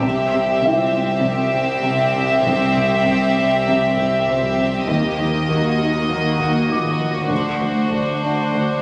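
In a straight 4/4 at 99 BPM, this eerie, mysterious suspense cue, cut from a longer film score, floats over C, Eb minor and D7 as an up-front, rich violin section carries the sul tasto melody above a clear second violin line, background violas and a very quiet, nasal cello riff, while dark double basses and vibrato-tinged cellos hold the bass, a saturated taiko ensemble on heavy sticks rumbles far back, and a felt-muted upright piano adds mellow texture with audible action noise, all bathed in a lush concert-hall reverb with a phone-in-the-room intimacy.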